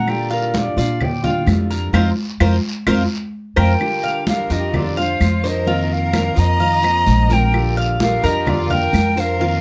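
Relaxed, warm Cuban son and guajira at 128 BPM in Bb major, where an airy, distant silver concert flute carries the melody with vibrato and takes a solo over the opening 3.8 seconds, backed by a bright picked steel-string acoustic guitar, the metallic double-string arpeggios of a Cuban tres, a thumpy, woody pizzicato upright bass up front, ringing high-tuned congas, background claves and a raspy guiro, before a drum fill at 3.6 seconds brings in a rich, smooth bowed violin section on a second line, all set in light reverb with close, detailed microphones.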